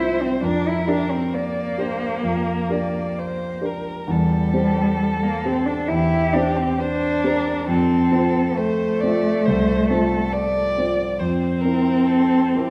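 Warm and lyrical, this slow romantic movement for piano trio unfolds in an unhurried 4/4 with uneven, rubato beats that let each phrase breathe. A muted violin carries the melody in a veiled, con sordino voice, shaded with vibrato and portamento. Beneath it, a muted cello sits up front with a second line, its soft attacks and light vibrato giving it a shadowed, intimate tone. A dark concert grand piano provides the accompaniment, mellow and smooth, with deep bass, short sustain and a vintage character. All three play throughout this 12.7-second fragment of a longer piece, moving through Gm7/F, C/E, F and C7/F inside the generous reverb of a recital hall.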